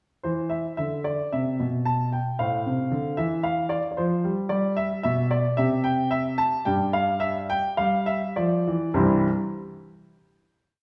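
A baby grand piano with an open tone and long sustain sits up front, carrying a single-line melody over an independent bass line in counterpoint across this short, complete classical-period sonatina in C major. The mood is cheerful and elegant, moving at a straight 100-114 BPM in 4/4, with the theme running from 0.2 seconds until a final chord arrives at 9.0 seconds. A wet recital hall reverb gives the instrument the spacious ring of a church or concert hall.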